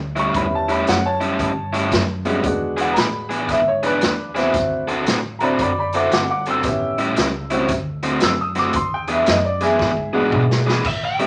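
A swinging 4/4 shuffle at 114 BPM drives this swaggering, soulful electric blues excerpt, cut from a longer piece and moving through A7, E7 and D7. An upright bass thumps woody pizzicato from the start, joined at 0.2 s by a clear upright piano, a crunchy overdriven guitar riff up front, and a raw garage drum kit with a boomy kick and gritty, saturated small-room pump. The kit plays a fill from 9.8 s, and at 10.9 s a dark lead guitar through a small cranked amp enters briefly, all set in a wet studio reverb.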